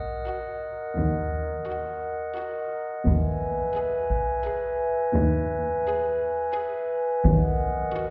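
A straight 3/4 pulse at 86 BPM drives this mysterious, tense suspense film-score fragment in Eb phrygian, where a glassy, ethereal glass harmonica sits up front with sustained chords over a veiled, con sordino violin section carrying the melody, dark muted cello and double bass sections hold a low Eb2 from 1.0 s, a taiko ensemble with hard sticks enters at 3.1 s as the harmony shifts from Ebm to E/Eb before returning at 7.2 s, and a wet concert-hall reverb surrounds the whole passage, which is cut from a longer piece.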